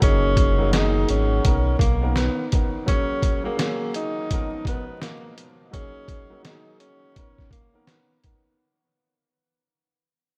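A breathy tenor saxophone carries the melody in this soulful, warm boom-bap hip-hop clip, cut from a longer piece, its mellow jazz-style solo colored by vibrato, subtone and scooped notes and treated with filtering and delay. Underneath, a dark upright piano plays woody, long-sustaining chords through a cassette-tape character, moving through F#69, Bmaj9, G#9sus4 and C#13/G# in F# major. A smooth, gliding synth bass with sawtooth and square-wave tones and portamento sits up front at the start before dropping out at 2.3 seconds. The sampler-style trip hop drum kit is compressed, pitched down and muffled, with a thumpy kick, a medium-tuned snare and hi-hat, set up front with a tape-warm feel. At a relaxed 84 BPM in 4/4 with a swung sixteenth-note feel, the track sits in a small room with light reverb and vinyl crackle, and the whole clip fades out across its 8.6 seconds.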